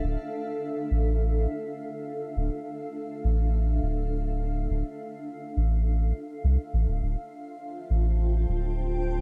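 Ambient dub with a spacious, hazy mood, where a deep, round sub bass sits up front in a light digital ambience beneath a granular cloud pad that holds blurred, slowly blooming chords in its own built-in reverb across the whole 9.2-second excerpt, moving from D minor to F over D at 7.0 seconds.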